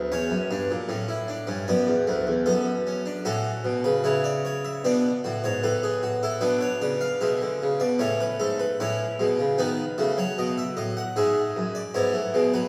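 Classical baroque-style four-part fugue for solo harpsichord, joyful and elegant at 76 BPM in straight 4/4, tuned to A4 = 442 Hz, its plucked, full French-style instrument with two sets of strings sitting up front and spanning D2 to F#5 within a wet church reverb of 2.5 seconds, while the harmony moves from C#dim/E through D, A and Bm7 before turning to B7 at 9.6 seconds and then E in this passage cut from a longer piece.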